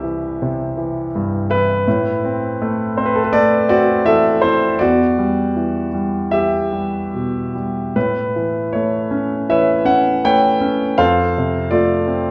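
Reflective and wistful, this short classical fragment for solo piano unfolds with a lyrical, rubato feel in 4/4, its harmonies drifting from C through colored minor chords before settling onto a brighter A chord at 8.0 seconds and turning to F near the close. The concert grand sounds clear and natural, sitting up front with deep bass and long sustain across a range from low C to the G above the treble staff. A wet recital-hall reverb gives the instrument a spacious, resonant bloom throughout its 12.3 seconds.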